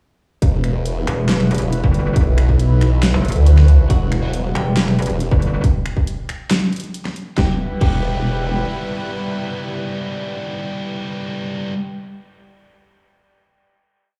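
Heard through a big sound system in a bare room with large studio reverb, this heavy, menacing wobble dubstep piece opens straight on a half-time drop at 0.4 s. A distorted kick and a tape-toned kit of huge snare, bright hats, snaps, claps and crash drive two up-front basses, a saturated, detuned formant-sweep wobble and a metallic FM wobble, whose changing wobble speeds carve out modulated phrases, while a lush, airy supersaw pad pumps under sidechain and, from 3.9 s, a clean hollow-body guitar in the background repeats a dub-echoed riff in octaves. From 7.4 s, as the drums and basses fall away, sparse double-tracked fuzz guitar stabs, one shape moved in parallel, ring out in dub echo over the pad's final chord until 11.7 s.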